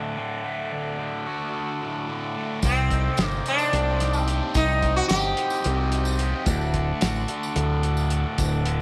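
A buzzy, overdriven combo organ holds sustained chords in the background while a bright, double-tracked fuzz guitar, thick with distortion and phaser, plays a riff up front from the first moment. This dark, trippy psychedelic rock fragment, cut from a longer piece, moves in 7/8 at 219 BPM counted in eighths with a straight feel, over a progression from D to Cmadd9 and back to D. At 2.6 seconds the band arrives: a growling, punchy fingered electric bass with overdrive, a dry, damped 70s drum kit with a fat snare, tight kick and rolled-off top, and a jingly tambourine tucked behind. A buzzing, shimmering sitar enters at the same moment with a melody touched by tape echo, its sympathetic strings ringing until 6.1 seconds. Moderate spring reverb and small room ambience frame the sound.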